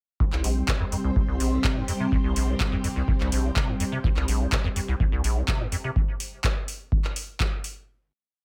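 Raw, gritty acid house in a short, complete piece: a deep, tape-warm four-on-the-floor electronic kick and a booming analog drum machine's handclaps and metallic open hi-hats, re-recorded in a large room, carry the groove. A squelchy, resonant square-wave acid bass plays an up-front 16-step line with accents and slides through delay, chorus and sidechain pumping. A lush vintage string machine holds sustained chords under phaser, ensemble chorus and pumping. Bass and strings stop at 5.9 seconds, leaving the drums alone until about 7.7 seconds, all in light reverb.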